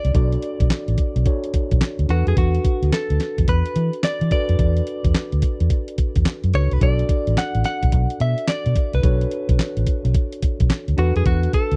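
Slick and bouncy, this short cut from a longer new jack swing R&B piece moves at 108 BPM in 4/4 with a 64% swing on the sixteenths, set in B minor. A clean 12-bit drum machine sits up front with a sampler-style character, pairing a thumpy kick and fat snare with hi-hat and handclaps, all re-recorded in a small room. Equally forward, a vintage fingered electric bass delivers a dark, round, punchy tone, foam-muted and amped, ranging from A1 to E3. A mellow tine electric piano heard through its built-in speakers supplies warm, clean accompaniment between D4 and D5, while a direct-recorded electric guitar carries the melody from F#4 to F#5 with a picked, compressed, warm sound sitting lower in the balance. The harmony alternates between Bm9 and E9sus4, and the dry, close production recalls a 1970s-style studio with little reverb.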